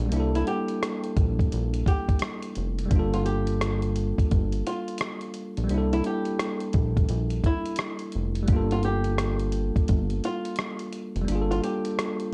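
Gritty, thumpy sampler-style drums of hi-hat, kick and rim click swing at 86 BPM under a fat, saturated analog bass and a bell-like, low-pass filtered tine electric piano moving between C13 and Gm9, while a dark, fingerpicked flamenco guitar with audible finger squeak carries the melody from 0.4 seconds in this reflective, hazy lo-fi hip hop excerpt in G dorian with light reverb.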